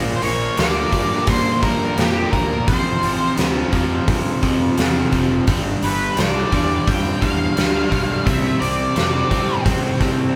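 An overdriven, double-tracked electric guitar riff opens this gritty, swaggering blues rock and southern rock excerpt at 86 BPM in a straight 4/4, with a growly fuzz bass sitting in the background beneath it as the chords move from Bb through F/A and G5 to C5. From 0.2 seconds a big acoustic drum kit sits up front with a medium-tuned snare, hi-hat and punchy kick in a bright stone room. Alongside it, a dark octave-fuzz lead guitar plays a distorted melody, all captured as a band playing live in one large studio with moderate reverb.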